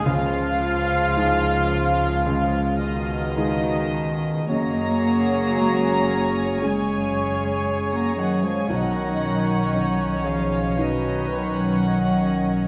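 Cinematic, emotional film score excerpt for orchestra with a moving, hopeful mood and a rubato feel, in which a dark, sul tasto violin section carries the melody in the background alongside second lines from a floating violin section, a distant flute ensemble and a punchy oboe, while a soft, felt-muted upright piano and a pure viola section accompany, a mellow French horn section holds sustained chords, an intimate cello section and a woody double bass section ground the bass, a bright clarinet joins at 4.5 s, and a wet scoring stage reverb surrounds the ensemble.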